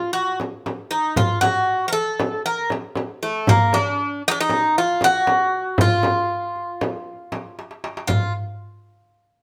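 In a straight 9/8 at 234 BPM counted in eighths, this stately, passionate Turkish makam ensemble piece in F makam hicaz, cut from a longer work, sets an up-front, mellow, metallic Greek bouzouki picking the melody between A3 and Bb4 on double strings with some octave-doubled strings, joined at 0.3 s by a crisp, deep, large metal-shell darbuka struck with hard hands and at 0.4 s by a small, bright, close and dry frame drum played with soft hands, the band performing live in one room with moderate studio reverb, and a drum fill arriving at 7.6 s.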